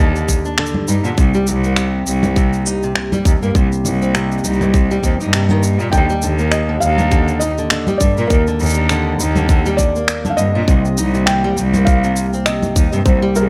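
A lightly swung 101 BPM groove of tight, up-front electronic kick and produced shaker, finger snaps and congas carries this hopeful, pastoral folktronica piece, where a fingerpicked steel-string acoustic guitar with finger squeak plays low-pass-filtered, delay-touched arpeggios, a bright bowed cello with light vibrato holds the bass up front, a very quiet warbling, detuned tape-like pad sustains nostalgic Ebmaj7 and Cm7 chords, and from 5.9 s a soft, felt-muted upright piano with audible action noise adds an intimate melody through digital delay, set in a small room with light reverb.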